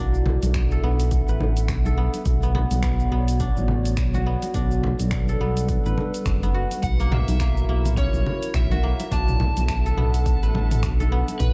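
Organic downtempo with a meditative mood and a swung sixteenth-note lilt, this clip is cut from a longer piece. A smooth, mellow synth bass sits up front, beneath a warbling, lo-fi tape-like pad of detuned sustained chords colored by chorus, built-in reverb and sidechain pumping. A silvery, ringing guzheng played with fingerpicks spins arpeggios through tape echo. Bright, band-limited congas and a punchy electronic kick stay in the background, alongside a layered deep house kit of finger snaps, hi-hat, shaker and toms. At 6.8 s an overdriven slide guitar enters with a melody carried on delay. The chords move from D/B through Bm7, G/B and F#7/B back to D/B, in a dark, warm production with light reverb.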